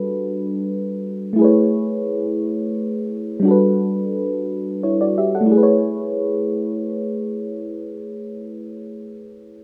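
A rough home-demo sound with light reverb and a digital ambience frames this short R&B fragment, cut from a longer piece. A mellow FM electric piano plays alone throughout, up front in the mix, its tone round, full-bodied and dark, with a fast attack, a decaying tail, a noise layer and a soft chorus shimmer. The tempo sits at a slow 58 beats per minute in a straight 6/8, giving the music an unhurried, sensual, warm mood in A major. The harmony moves between lush Gmaj9 and Amaj9 chords, settling on Amaj9 at 5.5 seconds as a second section begins and carries through to the cut at 9.6 seconds. The piano's range spans from G3 up to F#5, keeping the voicings rich and intimate.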